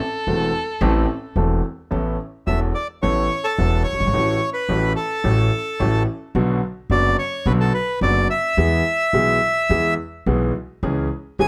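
Elegant, nostalgic tango in A major at 108 BPM in 4/4 with a rubato feel. A bowed violin opens expressively with vibrato and portamento at 0.0 s, and a clear, vintage-toned concert grand piano and a woody, growly pizzicato upright bass join at 0.3 s. A reedy, bright bandoneon with plate reverb takes the melody up front from 2.5 s, over chords moving from Aadd9 through F#m7/A, Bm and E to C#m, all captured by close, detailed microphones in a light reverb.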